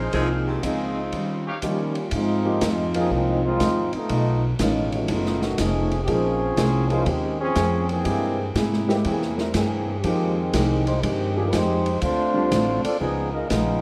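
A swinging 4/4 pulse at 121 BPM drives this dramatic big band excerpt in Ab major, cut from a longer piece. It opens with a tight, up-front saxophone section carrying the melody while a vintage-toned trumpet section adds soft-attack stabs in the background, both stopping at 1.6 s, partway through a break that begins at 1.1 s. Entering at 1.6 s, a clear trombone section with light vibrato takes a solo from 2.1 s that runs to the end, moving through rich harmony such as B7#11, C7b13 and a closing Db13. Underneath, a woody pizzicato upright bass and an open jazz drum kit with dark cymbals and a boomy kick keep the swing going throughout. A full-bodied jumbo acoustic guitar with audible finger squeak and a concert grand piano with deep bass sit in the background, the piano dropping out at 12.5 s, all set in a moderate large-studio reverb.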